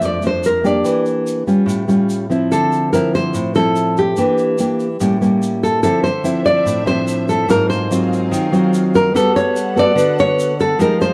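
A straight 4/4 bossa nova groove carried by a grainy, vintage-sounding tube shaker sets a melancholic, smooth mood, as one up-front nylon-string guitar fingerpicks the melody over a second thumb-plucked nylon-string guitar's accompaniment, joined at 5.8 seconds by a soft, woody bowed string section with light vibrato sitting in the background of this dark, moderately reverberant excerpt.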